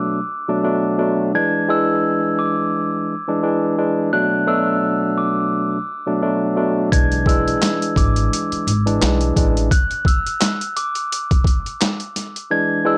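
A clean, up-front tine electric piano opens this moody, dark excerpt of boom-bap hip-hop at 86 BPM with a swung 16th feel, moving between Bm7 and E7, before a mellow, bell-like glockenspiel played with rubber mallets carries the melody from 1.4 seconds; at 6.9 seconds a woody pizzicato upright bass and a gritty, pitched-down, overdriven sampler-style drum kit with a thumpy kick, high-tuned snare, hi-hat and handclaps arrive together, and the bass drops out at 9.7 seconds for a break.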